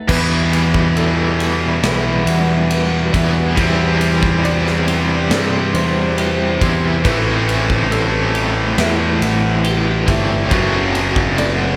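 A slow, straight 69 BPM pulse in 4/4 drives this melancholic, cathartic post-rock piece in E minor, where a punchy, big-room arena drum kit with crash, ride, snare and kick anchors an up-front, tight distorted guitar riff, a background overdriven guitar riff with tremolo, and a fuzzy picked bass, while a very quiet, twangy twelve-string electric guitar and a soft, felt-muted upright piano with digital delay weave arpeggios through a wet concert-hall reverb over chords moving from Emadd9 through Cadd9/E and Am7 to F#dim.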